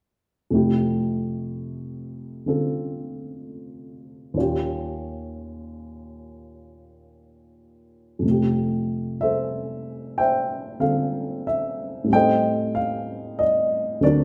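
A slow 4/4 swing at 62 BPM, with eighth notes lilting gently, sets the pace for this romantic, tender jazz ballad in F major, a short fragment of a longer piece. A dark baby grand piano plays alone from 0.5 to 14.2 s, ranging from D2 up to G5. Its tone is mellow and intimate, with short sustain and the soft clatter of the action audible, and it sits up front in the mix. The harmony moves from Fmaj9 to Eb7, then into a second passage at 8.2 s that settles on Fmaj7 before turning to Am7b5. A wet recital hall reverb, lasting about 1.4 seconds, surrounds the instrument with the natural air of a church or concert hall.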